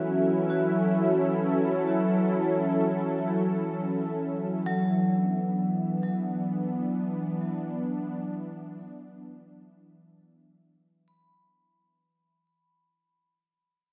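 Bathed in a dark, warm concert-hall reverb, this serene, reflective ambient excerpt drifts in free time, tuned to A4 = 441 Hz, with a fade-out running from 2.4 to 12.2 seconds. An up-front, smooth, detuned sawtooth pad with a soft attack and chorus holds sustained chords moving from F#m7 to E5 at 4.8 seconds, while a warbling, evolving pulse-width drone on E3 sits in the background. Arpeggios on a metallic, ringing vibraphone with medium hard mallets, slow motor vibrato and delay linger until 13.1 seconds.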